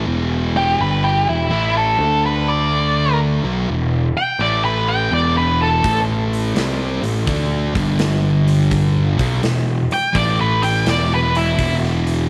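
Blues rock in a power-trio mold with a southern rock lean, this swaggering, gritty excerpt moves at 83 BPM in 4/4 with a swung eighth-note feel. A thick, double-tracked fuzz guitar carries the riff throughout, sitting up front beside a growly, overdriven picked electric bass that anchors the low end. From 0.6 seconds an octave-fuzz lead guitar takes the melody, its dark, distorted tone set off by a slapback echo. A big rock drum kit joins at 5.8 seconds with a punchy kick, a medium-tuned snare and hi-hat, captured with a big-room sound. The harmony circles power chords on E, D, A and G, and a moderate echo-chamber reverb gives the whole mix a roomy tail.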